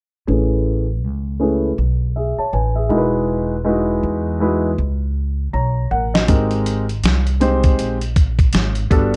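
Jazz-hop with a cool, smooth mood, this short passage cut from a longer piece rests on a swung 16th-note feel. A dark, mellow concert grand piano carries the harmony through lush major ninth chords, its intimate, vintage tone softened by a low-pass filter and plate reverb, and a filter sweep runs across the piano for the whole passage while audible action noise adds character. Beneath it, a woody, growly pizzicato upright bass holds down the low end from the start. At 6.2 seconds a dusty, sampler-style drum kit arrives with a thumpy kick, fat snare and hi-hat, sounding gritty and compressed as if re-recorded in a large room. The production is dark with light reverb, and the piano, bass and drums all sit up front in the mix.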